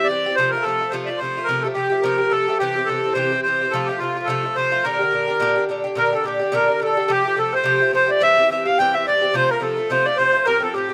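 A reedy, close-miked accordion carries the melody up front with a full, slowly beating tone, driving this dark and lively Celtic reel with a swung lilt over chords moving between F, Fadd9, C and Gm. Beside it, a picked Irish bouzouki gives metallic, double-strung acoustic accompaniment, and at 6.0 s a bright, airy wooden baroque flute joins in the background with a straight, tongued second line. All three parts carry a slapback echo in a dry outdoor sound with little reverb, in an excerpt cut from a longer piece.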